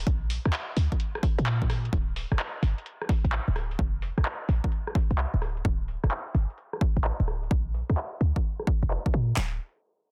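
A dense, heavily limited modern master with little reverb opens this short cut from a longer two-step UK garage track, soulful and late-night in mood, running at 129 BPM in 4/4 with a 66% swing on the sixteenths. A short 808-style bass sits up front from 0.0 seconds, its tight sine tone carrying a noise layer, a fast attack and a decaying tail, and it pumps under sidechain compression across a range from D1 to Bb2. A punchy analog drum machine supplies the kick, snare and handclaps, also placed up front with an electronic, analog punch. Beneath it, a quieter layered garage kit adds handclaps, metallic hi-hats and rim clicks, re-recorded in a small room with low-pass filtering on its snare, hats and room sound. A filter sweep on the drums runs through the passage until 9.4 seconds, giving the groove its shifting edge.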